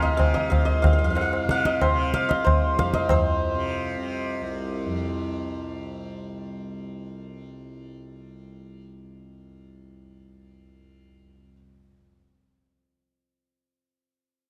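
Introspective and longing, this Hindustani classical excerpt in raga Malkauns on C moves at 187 BPM in 7/4, with a bright, hammered santur carrying the melody up front until 6.2 seconds, high-tuned, close and dry tabla ringing until 3.2 seconds, and a softly plucked, buzzing tanpura drone shimmering low beneath them through 12.0 seconds, all captured by close, detailed microphones in light reverb.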